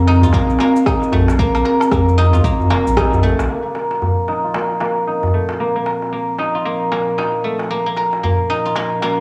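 Silvery, fingerpicked guzheng arpeggios ring up front through vintage 12-bit sampler grit, a low-pass filter, cassette tape and analog delay, with a filter sweep from 3.5 s. This excerpt of organic downtempo at 114 BPM in Bb harmonic minor feels mystical and warm, resting on a dark, warbling tape-like pad with sidechain pumping, a crisp metal-shell darbuka throughout, and a round sine sub bass that drops out at 3.5 s. Until then, an overdriven electronic kick and a produced shaker, rim click and woodblock fill out the groove, with a band accent at 3.0 s, all within moderate spring reverb and a nostalgic home-cassette character.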